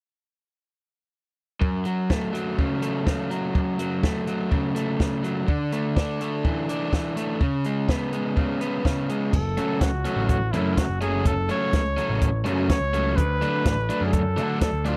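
An overdriven, compressed electric guitar riff sits up front from 1.6 s beside a compact, dry cocktail drum kit with a punchy kick, high-tuned snare and dark cymbals, moving through F#m, Dsus2 and C#5 in this restless, bittersweet indie rock excerpt, until at 9.3 s a growly, bright picked bass and a clear trumpet melody with vibrato and a smooth top join over F#m and D, all in a close, small-room 1970s-style sound.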